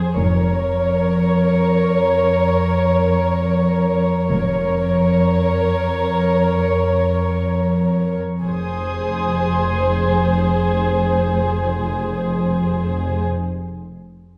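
A muted symphonic violin section sits up front, holding a veiled, lush second line with vibrato in the middle register over a Bb minor chord above an F bass. Beneath it, a muted cello section anchors the harmony on a low, dark F, bowed with a smooth top, and a symphonic double bass section joins at 0.2 seconds an octave below with a rich, soft-attacked tone sitting lower in level. The mood is uneasy and eerie, a cinematic fragment cut from a longer piece. At 8.4 seconds a second, studio-recorded violin section enters in the background, adding a high, dark, con sordino layer of texture until 12.0 seconds. The strings bloom in the reverberant space of a church or concert hall, whose lingering wet tail gives the muted ensemble a ghostly quality.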